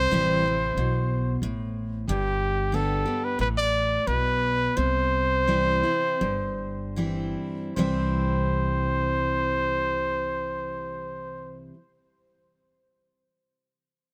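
Honky-tonk and classic country in C major, this nostalgic, easygoing excerpt moves at 74-92 BPM in a straight 4/4 and slows down between 2.1 and 7.8 seconds as the chords shift from C to G and back to C. A warm trumpet carries the melody up front in a jazz style, with light vibrato and scooped notes. A bright, full-bodied picked dreadnought guitar supplies accompaniment, and a woody, thumpy pizzicato upright bass anchors the low end, all captured with close, detailed microphones and little reverb.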